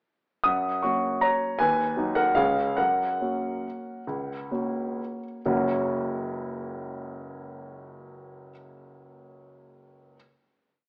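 Classical piano waltz in 3/4 with a sparkling, elegant mood, played with rubato by a solo grand piano that sounds intimate and up front, its tune in sixths over a waltz bass and its action noise audible, slowing down from 2.2 to 5.4 seconds before a final chord that rings from 5.4 to 8.0 seconds in a recital hall reverb, all heard through an AM radio sound.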